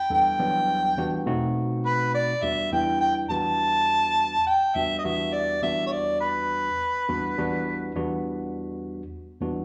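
A mellow, jazz-inflected harmonica with light vibrato and scooped notes leads this brooding, soulful swung blues fragment, soloing from the opening until 2.4 seconds and carrying its overdrive and slapback echo through to 7.9 seconds, while a worn, slightly out-of-tune tine electric piano, clean through a combo amp and touched with its own slapback echo, sits up front over Em9 and B7b9 harmony until 9.6 seconds, all captured as a live gig through the venue's PA with lush hall reverb.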